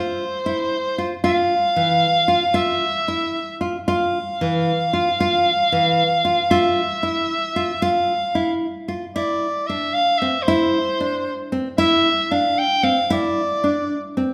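A nylon-string guitar and a clear soprano saxophone begin together, opening this short cut from a longer contemporary instrumental piece with a restless yet hopeful mood. The guitar sets up fingerpicked arpeggios in the lower-middle register, its full-bodied, deep classical tone sitting up front with a finger squeak audible on the strings. Above it, the soprano saxophone carries a solo melody in a classical style, its clear voice shaped by a light vibrato and a roomy, slightly distant presence. The music moves in an uneven 5/8 metre at 228 BPM counted in eighths, with a straight feel that keeps it pressing forward. The harmony rests on F5 before shifting to Cadd9 at 9.2 seconds as the second passage begins, while a wet recital hall reverb surrounds both instruments until the guitar rings out last at 14.3 seconds.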